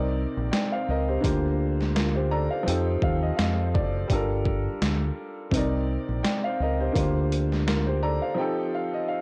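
A swung sixteenth-note groove in 4/4 drives this gritty, moody boom-bap hip-hop excerpt. Compressed, pitched-down sampler drums with a thumpy kick, a medium-tuned snare and hi-hat are overdriven and re-recorded in a small room, entering at 0.5 s. Beneath them, a dark, round fingered electric bass sits up front. A woody, vintage upright piano with long sustain and filtered edges carries the chord changes, then plays alone through the brief break from 8.4 seconds. The whole piece has the lo-fi character of a cassette home recording, bathed in light digital reverb.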